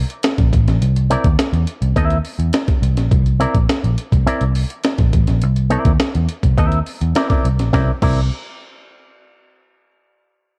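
A straight 4/4 funk groove at 104 BPM in C mixolydian struts with energy, led by an up-front, foam-muted vintage picked bass that sounds round and punchy and a gritty, pitched-up breakbeat sampler-style kit with a thumpy kick and medium-tuned snare, while a dark, clean electric guitar with an envelope filter enters at 1.1 seconds over a C7 chord that shifts to C9 at 7.7 seconds, all dry and tinged by cassette tape in this cut from a longer piece.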